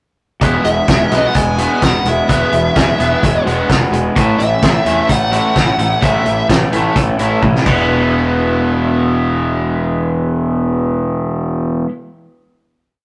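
The loose indie drum kit stands out most, sitting up front with a fat snare, tight kick and dark cymbals rolled off at the top, playing an indie four groove until a fill at 7.4 seconds leads into the closing hit. This is a short, complete indie rock piece in a straight four, jangly and carefree in mood, moving from an Eadd9 chord to A and back to E. Up front, an overdriven electric guitar plays palm-muted eighth notes, while a crunchy overdriven guitar adds bright picked arpeggios further back in the mix. A fuzz-driven electric bass, round and dark, pushes steady eighth notes underneath. A smooth overdriven lead guitar with a shadowy tone states short hook phrases high up from 0.6 to 6.5 seconds. The whole band rings out in a rough rehearsal-room sound with tube saturation and a moderate stone-room reverb, and the guitars and bass end on a held final hit from 7.9 seconds.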